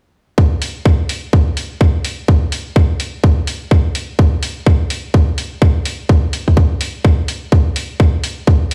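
A tight, up-front sound with little reverb on the drums opens this short cut from a longer bass house track, heard as if played on a big sound system in a bare stone room. At 126 BPM in 4/4, the groove carries a 61% swing on the sixteenths, giving the aggressive, gritty mood a loose, shuffling push. The electronic kick drum enters at 0.4 seconds, layered and produced, and dominates the mix. The electronic hi-hat follows at 0.6 seconds with bright, layered hats set well beneath the kick. Both parts run through a single section until about 8.7 seconds, keeping the focus squarely on the stripped-down rhythm.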